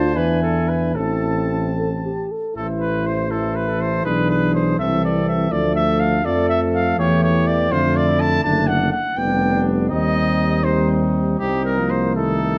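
Moving in a rubato 6/8 at roughly 73-83 BPM counted in dotted quarters, this grave, solemn brass quintet excerpt in A minor unfolds as a classical piece, tuned slightly high with A4 at 444 Hz. A clear trumpet with light vibrato carries the melody up front from G4 to A5, sounding distant and roomy, while a second clear trumpet shades a lower line beneath it. A warm French horn with vibrato and a dark trombone with a smooth top fill the accompaniment, the trombone sitting in the background, as a mellow tuba anchors the bass up front, reaching down to F1. All five parts play throughout the 12.6 seconds, moving from E7 and Am through Dm, D/F# and G7/F before darkening onto Cm at 11.4 seconds. Close, detailed microphones capture the ensemble within a moderate recital hall reverb, and the passage is cut from a longer piece.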